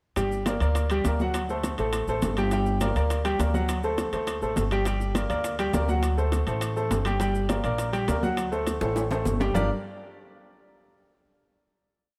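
Driving and passionate, this short salsa piece sets a clear, smooth concert grand piano playing an octave montuno up front over a woody, thumpy pizzicato upright bass tumbao that anticipates the Gm and D7 changes, with bright high-tuned congas and grainy maracas in the background, very quiet round bongos and ringing metal-shell timbales, all under light reverb, until a drum fill at 8.8 seconds leads to a final Gm7 chord at 9.5 seconds.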